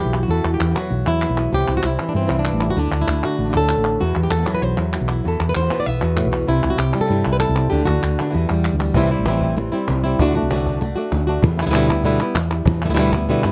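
Flamenco in E minor at 194 BPM, mournful and dramatic, where an up-front fingerpicked guitar carries the melody with audible finger squeak over a second guitar's background stabs, a dark, growly fretless bass, crisp dry palmas that drop out at 9.0 seconds and return at 11.6 seconds, and a snappy cajon with snares entering at 8.9 seconds, all captured close and detailed with little reverb in this short cut from a longer piece.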